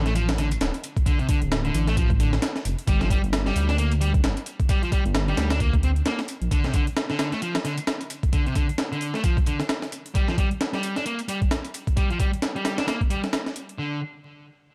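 Breakbeat at 132 BPM with a swung sixteenth feel, this raw, energetic excerpt pairs a gritty, thumpy sampler-style kit with its high-tuned snare and a faint layer of metallic, overdriven electronic hi-hats, while a fuzzed, lo-fi guitar riff, filtered and echoed, runs over a deep, rumbling detuned saw bass that moves from D5 to Gm before dropping out at 6.5 seconds, all in a dry room dusted with vinyl crackle.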